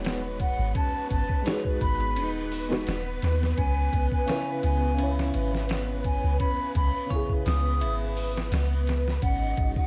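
Set at 85 BPM in 4/4 with a light 16th-note swing, this dark, smoky trip hop fragment in C# minor rides on a compressed, pitched-down boom bap sampler kit with a thumpy kick, medium-tuned snare, hi-hat and ride, sitting up front with gritty cassette colour. Alongside it is a soft, round 808-style bass that is deep, with a fast attack and a decaying tail. A felt-muted upright piano plays mellow, intimate accompaniment through tremolo and tape echo until 8.3 seconds, while a string machine with cellos holds slow-attack sawtooth chords, its phaser and ensemble chorus giving them an evolving vintage sheen. A clean electric guitar picks arpeggios in the background, roughened by 12-bit sampler grit and tape echo, and from 0.4 seconds a hollow concert flute carries the tongued, vibrato-laden melody, close-miked with tape echo. The harmony moves from G#m7 to C#m7, and near the close, at 9.2 seconds, an egg shaker and triangle slip in faintly in the background as the chord turns to G#7(no3), joined by a breathy, wind-like tuned noise layer. 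The whole carries the light reverb and cassette character of a home recording, cut from a longer piece.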